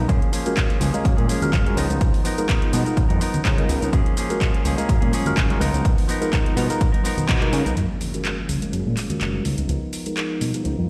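Joyful and funky, this filtered disco house excerpt pairs a clean, compressed semi-hollow guitar riff with vintage 12-bit sampler grit and a fat, detuned sawtooth bass, both pumping through a low-pass filter, alongside a phased tine electric piano, layered house drums with metallic hats, handclaps and shaker, very quiet bright tambourine and congas, and a punchy, up-front analog kick that drops out at 7.4 seconds, before an electronic impact lands at 7.8 seconds and a filter sweep carries the mix to the end in a bare stone room.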